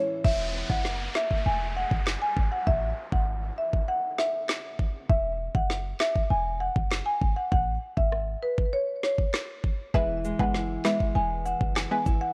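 An up-front rosewood-bar marimba carries the melody in this sunny, summery 99 BPM dancehall piece in E major, over a deep, boomy sine-like 808-style bass and a produced electronic island pop kit with knocking kick, woody snare, rim clicks, handclaps and crash, while an electronic downlifter sweeps through the opening five seconds, a small fingerpicked nylon-string guitar plays arpeggios at the very start and returns at 9.9 s alongside a round, full-bodied chorused analog pluck and a close, dry woodblock and cabasa in the background, all set in a worn, warbling cassette-tape ambience.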